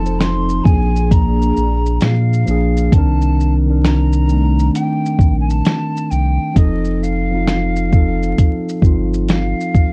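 Lo-fi hip hop at a relaxed, swung 66 BPM in C dorian, this reflective, hazy excerpt is built on a muffled, pitched-down sampler drum kit with a thumpy kick, fat snare, hi-hat, shaker and finger snaps, sitting up front beside a round, deep sine sub bass. A clean, mellow tine electric piano carries the accompaniment, while a breathy, hollow jazz flute floats its filtered melody from a distance, and a dark, detuned analog pad with chorus hovers in the background until about 2.9 s, where the harmony moves from F7 and Bb7 to Cm9. Light reverb and vinyl crackle give the whole recording its dusky, softened finish.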